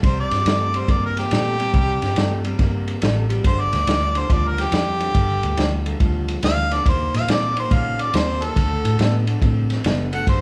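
A swung shuffle drives this soulful, smoky electric blues excerpt, with a vintage drum kit up front whose punchy kick, medium-tuned snare and dark cymbals sit under a round, foam-muted fingered bass. A slightly broken-up electric guitar through a small old amp plays a compressed, lo-fi riff. From 0.1 s, an overdriven harmonica takes a jazz-style solo with light vibrato, scooped notes and a smooth top, all in a moderate large studio reverb that places the band live in one room.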